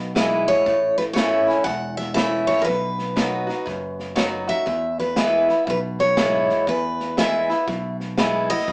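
Two up-front picked acoustic guitars and a growly, amped fingered electric bass open this sunny, nostalgic honky-tonk and classic country excerpt at 120 BPM in a swung 4/4 in E major: a full-bodied dreadnought carries the melody over the woody, boxy accompaniment of an old ladder-braced guitar through E, A and B chords. From 0.2 s a natural country drum kit with a punchy kick and medium-tuned snare joins them, all heard as a band playing live in one room with wet studio reverb and a small-speaker sound.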